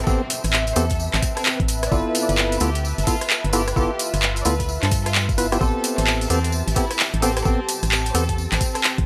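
An overdriven garage drum kit sits up front, its handclaps, metallic hi-hats and rim clicks driving this bouncy, skippy two-step UK garage excerpt at 130 BPM in A minor, with a 62% swing on the 16th notes. A knocking, overdriven electronic kick and a jingly, saturated tambourine fill out the groove, while a dark, hollow FM bass with an organ-like tone pumps against the kick from the start. Percussive organ stabs, mellow and treated with chorus and analog delay, punctuate the harmony as it moves from Am9 to G13 at 1.9 seconds and back to Am9 at 5.6 seconds. Above them, a lush, intense violin section carries the melody with vibrato and tape echo, set at a distance. In the background, an ethereal, detuned pad with phaser and a blurred, evolving granular cloud pad breathe with the sidechain, and a very quiet downlifter falls away by 1.9 seconds. The gritty, dry hardware sound carries only a light digital ambience.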